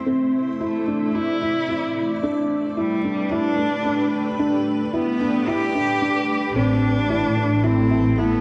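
Drenched in a lush hall reverb with a dark, cinematic production, this melancholic piano-and-strings electronica piece opens with a boxy, felt-muted upright piano riff, a cloudy, detuned granular pad holding sustained chords in its own reverb, and a clear, bowed solo cello melody with vibrato, set distant and softened by a low-pass filter. After a build-up over Am and Gadd9, the drop at 6.6 s brings in a bowed double bass section, expressive and up front, anchoring the return to Am until the cut at 8.4 s.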